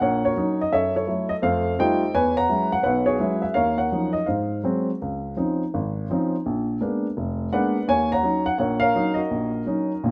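Moody and swinging, this solo jazz excerpt in Eb minor moves at 168 BPM with a loose, rubato swing feel, as a woody upright piano with long sustain sits up front in a moderate large-studio reverb and spans F1 to Bb5 over the full 10.1 seconds, threading through richly colored harmony from Ebm7 through Gbm7, F9, E69, Dbmaj9 and a tense Bb7b9 before landing back on Ebm7 at 7.9 seconds.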